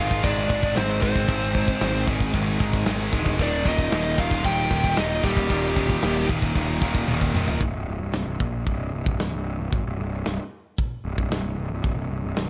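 Dark and aggressive, this heavy metal passage, cut from a longer piece, drives along at 114 BPM in a straight 4/4. A dark-toned high-gain lead guitar carries the melody with distortion and a digital delay, shadowed by a very quiet second high-gain lead line set an octave-range lower, both dropping out around 6.3 seconds. Beneath them, two bright, picked high-gain guitars in the background and a very quiet, double-tracked fuzz guitar churn through a low riff over Ab and then Eb. A growly, overdriven fuzz bass sits up front in the lowest register, while a tight acoustic drum kit with a medium-tuned snare and rolled-off top drives the groove with crash, hi-hat, kick, snare and toms. After a drum fill from 7.1 seconds, the guitars stop at 7.6 seconds and the bass and drums carry on alone in a small room ambience until 12.5 seconds.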